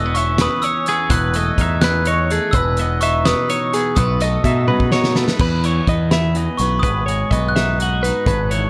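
Light reverb gives this short excerpt of math rock and midwest emo a bright, intricate air, moving in 6/8 at 84 BPM with a straight feel in E major. A glockenspiel played with hard plastic mallets carries the melody, its dark, smooth, bell-like ring trailed by slapback echo. Two clean, compressed, twangy twelve-string electric guitars fill in beneath: one plays the accompaniment with subtle chorus, while the other picks arpeggios higher up. A growling, overdriven picked bass sits up front beside a loose indie drum kit with a punchy kick, fat snare, dark cymbals and a pumping studio room sound, and the drums play a fill from 4.7 to 5.4 seconds. The harmony moves through C#m7/E, Emaj7 and B7, then shifts to E5 and G#m7 after 5.4 seconds.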